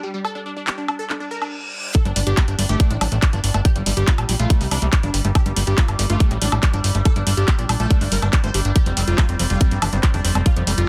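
This intense, alien slice of psychedelic trance opens on a bright, punchy supersaw stab carrying the melody, treated with phaser, delay and sidechain pumping. Beneath it, a nasal drone of moving overtones sits in the background with chorus and its own built-in reverb. A garage drum kit of handclaps, hi-hat and woodblock comes in almost at once, tape-tinged, layered and set in studio reverb. A reverse cymbal at 1.3 seconds leads into the drop at 1.9 seconds, where a tight electronic kick lands up front and a squelchy, screaming acid riff, distorted and resonant with filter sweeps, chorus and delay, sits further back. Moments later a fat analog bass enters with thick, detuned sawtooth and square-wave tones, a filter pluck and tube saturation. The mix is dense and heavily limited with little reverb overall, and the passage is cut from a longer piece.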